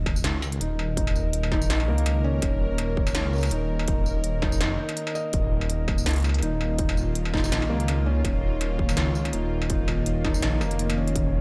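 Half-time drum and bass at 165 BPM with a 16th-note swing, heavy and tense, cut from a longer piece: a deep, rumbling detuned saw bass sits up front, beating and dark, beneath a bright, string-like drone of sustained chords that breathes with sidechain pumping and vibrato inside its own reverb. A distorted electronic kick and an industrial kit of clanging snare, crisp hats, struck metal and tambourine, both re-recorded in a small room, drive the groove until the kick drops out at 10.4 seconds. From 0.6 seconds a felt-muted upright piano adds soft, intimate arpeggios with audible action noise, trailed by a diffuse ambient delay, all under a light reverb.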